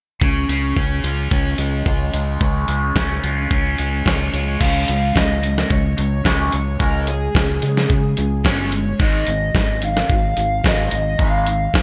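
Indie rock at 109 BPM in Db major with a jangly, upbeat mood, where a bright, overdriven guitar riff with phaser, a growling, punchy fingered bass with overdrive and a gritty, compressed sampler-style drum kit with a thumpy kick and gated reverb drive from the start, before a lo-fi, overdriven lead guitar with analog chorus enters at 4.1 s to carry the melody, all set in light reverb with a bright 1980s-style digital production.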